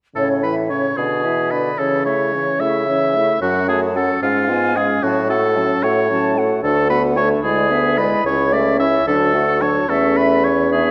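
Lively and spirited, this quick classical-period wind quintet movement in a straight 6/8 is heard as a fragment of a longer piece, with all five players sounding together from 0.2 to 10.9 seconds. An airy, expressive flute carries the melody with vibrato from a distance in the background, while the soft-attacked, smooth-topped oboe sits up front on a second line. The clear, roomy French horn and a warm clarinet fill in the accompaniment over an up-front bassoon bass with light vibrato, all set in a moderate scoring-stage reverb as the harmony passes through F-sharp minor before settling back toward A.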